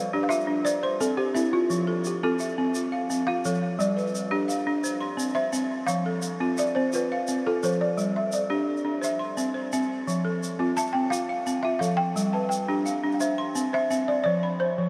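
Warm and flowing, this short piece of West African traditional music is cut from a longer performance and moves at 115 BPM in a straight 12/8, centred on F Lydian. Two balafons carry the music from the first moment. One plays the melody with a woody, buzzing tone, struck with rubber mallets and sitting full and up front. The second spins arpeggios across a broader span with a rounder, softer sound from soft rubber mallets, placed just behind it. Both balafons are touched with delay. A grainy, bright egg shaker enters at 0.3 seconds, kept low and band-limited with a vintage feel. The balafons cycle through G, C and F chords, and the whole mix is soaked in a huge ambient reverb with a 7.9-second tail, giving the recording a dreamy, floating atmosphere.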